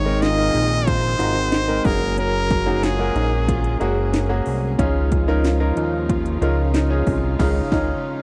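A dry, close 1970s-style studio sound frames this anthemic, uplifting piano-driven pop excerpt in Db major at 92 BPM, where a brilliant, forceful trumpet with vibrato leads up front until 3.8 seconds over a bright, woody upright piano, a dark French horn section, lush bowed strings, a fingerpicked steel-string acoustic guitar riff with finger squeak in the background, a glossy, nasal chorused synth bass, and a punchy, overdriven electronic house drum kit with cracking snare, metallic hats and handclaps, moving from Ab through Gbadd9 to Dbadd9 before a band accent at 7.4 seconds.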